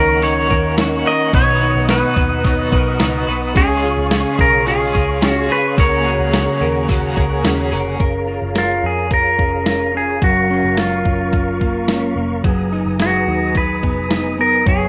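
A clean pedal steel guitar sits up front with the melody, played with fingerpicks and slide, using volume swells and delay in this blissful, floating dream pop piece in F# major at 108 BPM. Beneath it, a dark clean electric guitar fingers arpeggios through analog chorus and delay, and a mellow, flute-like tonewheel organ holds sustained chords with key click and a fast rotary speaker. A bright, twangy guitar at the edge of break-up adds tremolo-washed accompaniment until 8.0 s, while a round, punchy foam-muted bass and a detuned 8-bit drum machine with a thumpy kick drive it all in a rough home demo mix with moderate studio reverb.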